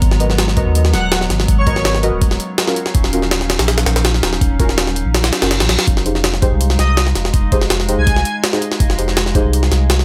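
A gritty, compressed jungle drum kit sits up front in this dark, nostalgic drum and bass excerpt at 164 BPM in F phrygian, its pitched-up samples built on a thumpy kick, a high-tuned snare and hi-hat in a small room ambience. Beneath it a thick, saturated sub bass holds deep sustained notes with a fast attack, while a warbly, lo-fi tape-like pad of detuned square and triangle tones fades in slowly with chorus and its own reverb, carrying the chords from Abm9 to Ebm9 and then Fm9. From 0.2 seconds, deep, soft chord stabs of detuned triangle, sawtooth and sine tones decay through a filter sweep, chorus and dub echo. An airy, dreamy lead with vibrato, a noise layer and vintage 12-bit grit surfaces briefly at 0.9 seconds and again at 6.8 seconds, floating high with chorus and dub echo. An electronic reverse cymbal rises in the background at 5.4 seconds, just ahead of the shift to Fm9, and the mix overall stays dry and close.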